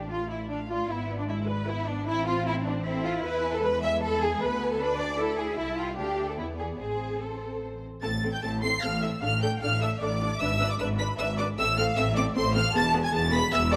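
A quick classical-period movement for string orchestra in triple time, dramatic and urgent, heard as a fragment of a longer piece whose opening phrase returns at 8.0 seconds. Bowed violins carry the smooth, vibrato-laden melody high above a lush, up-front second violin line, while distant violas fill in the accompaniment and expressive cellos and rich double basses sit underneath. Close, detailed microphones and light reverb give the ensemble clarity throughout its 13.8 seconds.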